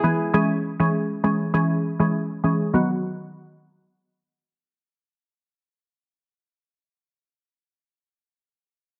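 A straight 4/4 dancehall pulse at 100 BPM drives this bouncy, sunny fragment in B major, where a glassy, crystalline wavetable pluck with a nasal edge, a fast attack and a short decay sits up front as accompaniment, treated with chorus and a low-pass filter sweep through the opening 2.7 seconds as the harmony moves from C#m to B, inside moderate digital room reverb and a dense, heavily limited modern master.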